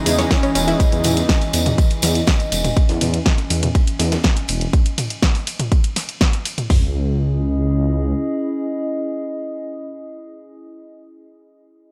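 This melancholic, dramatic melodic techno excerpt in C# minor at 122 BPM opens on a drop. A brief, round synth brass melody carries chorus, phaser, sampler grit and delay, a thick, airy unison pad holds chords, and a nostalgic, warbling tape-like pad sits in its own reverb. Almost at once a very quiet, detuned unison pluck adds arpeggios and a rumbling, saturated saw bass pumps up front, while two layered house drum kits bring a punchy kick and snare, bright hats, ride and toms in studio reverb, shaded by a dry, very quiet reggae kit and a distant, jingly tambourine. The drums fall away at 6.8 s, the bass stops at 8.1 s, and the lo-fi pad carries on alone until 11.1 s.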